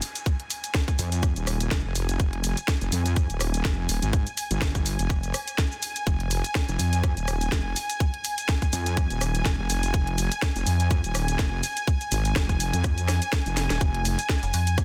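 A faint downlifter, a clear symphonic string section with light vibrato pumping under the sidechain, and an overdriven garage kit with a cracking snare, rim clicks, hi-hats and shaker open this swaggering, aggressive bass house excerpt, joined at 0.3 seconds by a tight, up-front electronic kick. A heavy, detuned wobble bass, saturated and thickened with chorus, enters at 1.0 seconds over a groove swung on sixteenths, in a single unbroken section over one minor chord, with a drum fill arriving at 13.6 seconds. At 14.4 seconds a dark, metallic FM bass with a fast attack takes over, all inside digital ambience and a dense, heavily limited modern master.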